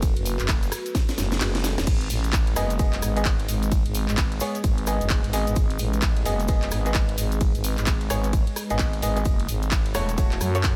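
A dry, close, gritty sound with the low end up front opens this swaggering bass house excerpt at 130 BPM in 4/4, its sixteenths swung and its harmony moving from F#m to G#m in G# phrygian before returning to F#m at 9.3 seconds. A growling, thick FM bass with overdrive drives the track alongside a punchy, tape-warm electronic kick, the bass pumping against the sidechain, while a house drum kit of cracking snare, handclaps, hi-hat, ride, rim click and crash sits a little further back. A grainy, mellow cabasa and a deep, moody analog pad with chorus hover in the background, the pad's detuned, wave-folded chords breathing with the sidechain. Early on, a drum fill runs from 0.9 to 1.9 seconds as the kick drops out briefly and a very quiet electronic swell passes beneath it. From 2.6 seconds, brilliant grand piano stabs enter with tape echo and sidechain pumping, cutting across the dark low end.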